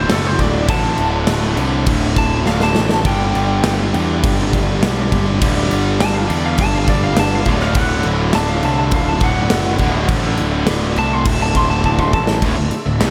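Hard rock with a swaggering, anthemic mood, this excerpt moves at 102 BPM in a straight 4/4 and is cut from a longer piece. A slightly broken-up, twangy lead guitar carries a solo melody from the start until 12.4 seconds, compressed and touched with slapback echo. Beneath it, two bright, overdriven electric guitars pick a low riff in the background, one with slapback echo. A fuzzed, punchy picked bass sits up front, and a gated 80s drum kit with a tight kick, a medium-tuned snare and bright crash cymbals enters at 0.1 seconds, adding fills around 2.5 and 11.8 seconds. A very quiet, gritty tonewheel organ holds sustained chords through a slow rotary speaker with key click, while a lush hall reverb gives the whole mix a big arena sound over harmony moving from D5 to G5 and D.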